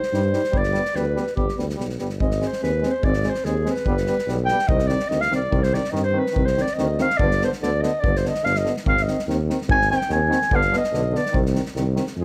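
A dark, roomy clarinet solos up front through this short, virtuosic and bittersweet Balkan brass band cut in 2/4, over a punchy tuba bass line, a bright, distant trombone and a mellow euphonium in the background adding accompaniment, and a natural small-room drum kit of kick and snare, all cycling through C minor, G and A-flat chords under light reverb and close, detailed microphones.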